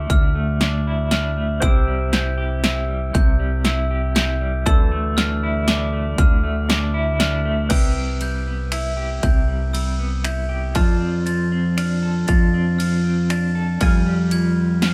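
Moving in a straight 3/4 at 118 BPM, this cinematic, hopeful post-rock passage in C major is driven by a big-room dance drum kit that enters at 0.1 s, its punchy kick and snare, metallic hi-hat, ride, crash and finger snaps sitting up front with a layered, produced electronic sheen. Beneath it, a growling fingered electric bass holds the low end with an overdriven, direct-and-amped tone that is also placed forward. A clean, picked electric guitar plays arpeggios through a tremolo effect, while a glockenspiel struck with brass mallets adds high, bell-like, sparkling arpeggios. A pedal steel guitar, played with fingerpicks and slide, sustains chords with a twangy, compressed brightness. The harmony moves from Dmadd9 and C into a second section at 7.7 s built on Cmaj7, F6 and Fmadd9, all heard as a band playing live in a small room with moderate reverb, cut from a longer piece.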